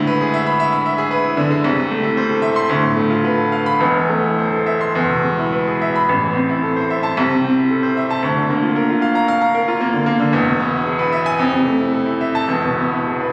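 A clear, present, polished baby grand piano plays alone and up front throughout this agitated, stormy A minor virtuoso piano study, cut from a longer piece, moving with rubato in 4/4 at roughly 104-116 BPM across a span from E1 to C6, with a second section beginning on A minor at 6.1 s and a closing turn through Bb/D, E and Fmaj7 before ending on E, all heard through a wet church reverb and a compressed phone recording made in the room.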